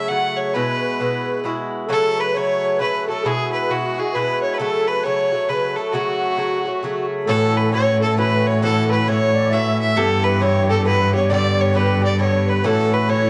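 Cheerful and rollicking, this Celtic folk waltz in swung 3/4 is carried by a rich, biting fiddle melody up front, shadowed by a reedy, shimmering musette accordion sitting in the background as a second line, while a metallic, picked Irish bouzouki with double strings supplies the accompaniment. At 7.3 seconds the tune shifts from its minor opening into a brighter mixolydian passage, and a clear, smooth cello with vibrato enters on bass. Moderate spring reverb and the dulled, muffled top of cassette tape give this fragment of a longer piece a homespun sound.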